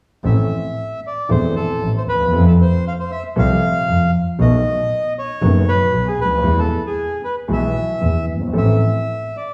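Tango, dramatic and tense, moving with a pliant rubato feel in this short passage cut from a longer piece. The bandoneon carries the melody from 0.3 seconds, its reedy, dark, mid-forward voice placed up front. Underneath, a concert grand piano supplies the accompaniment with a warm, intimate, natural tone, deep bass and long sustain, its action noise audible as it sits close to the listener. A single bowed double bass anchors the low end with a clear, focused sound and vibrato, heard close, and both piano and bass stop at 8.8 seconds while the bandoneon lingers until 9.5 seconds. The harmony travels from Am through F, B7 and E before returning to Am, all set in a wet, large studio reverb.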